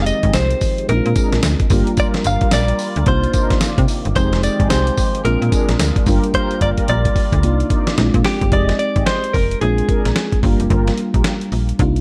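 A snappy, slap-like FM bass with a metallic, digital attack drives this punchy, bouncy new jack swing excerpt at 110 BPM in F dorian, its 16ths swung at 61%. A gritty, compressed sampler-style drum kit sits up front with a thumpy kick, a medium-tuned snare, hi-hat and tambourine, and plays a fill from 6.3 to 8.5 seconds. A clean, direct-recorded electric guitar carries the picked melody until 10.4 seconds, over a round, full-bodied FM electric piano with chorus that accompanies on chords such as Fm9, Bb7, Gm7 and Cm11. Further back, an evolving, resonant sawtooth pad holds sustained chords until 8.5 seconds, while detuned, brassy synth stabs with vibrato, chorus and tape echo sit in the background. The production is dark and warm, with light reverb and a digital ambience.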